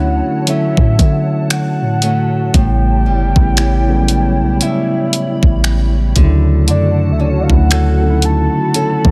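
This slow, sensual contemporary R&B fragment at 58 BPM opens on a Dmaj7 chord, with a tine electric piano, a fingerpicked flamenco guitar playing arpeggios, a hollow, flute-like pad and a deep, boomy 808-style bass all sounding from the start. At 0.5 seconds a clean 12-bit drum machine arrives with finger snaps, hi-hat and a thumpy, overdriven kick that sits up front beside the bass. Above them, a soft, round synth lead doubled at the sub octave carries the longing melody, colored by chorus and vibrato with a dark edge. The pad's vintage, detuned square-wave tone warbles under an ensemble chorus and a moving notch, while the piano has a clean, speaker-like quality. The harmony moves from Dmaj7 to A7 at 2.5 seconds and back to Dmaj7 at 6.2 seconds, all wrapped in a digital ambience with a gentle 16th-note swing.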